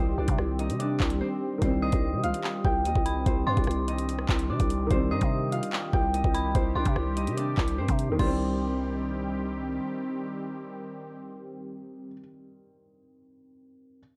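A knocking drill drum kit sits up front in this dark, tense hip hop excerpt, its electronic kick, metallic hi-hats, handclaps, rim clicks and crash cymbal driving a half-time feel, with a brief mute near the start, until it stops at 8.3 seconds. A growling, buzzy 808-style bass with a sine core and a fast, decaying attack sits just as close, holding the low end until 9.8 seconds. Over this, a fingerpicked Celtic harp carries the ringing, acoustic melody through a low-pass filter and tape echo, while an eerie, inharmonic FM synth bell adds a high second line with chorus and echo. A vintage sawtooth pad with a slow attack and filter swell sustains evolving, warbling chords, and a worn, boxy grand piano plays intimate accompaniment in the background, its action noise audible, lingering alone to the end at 14.0 seconds. The mix is dry, with little reverb, and the piece is cut from a longer work.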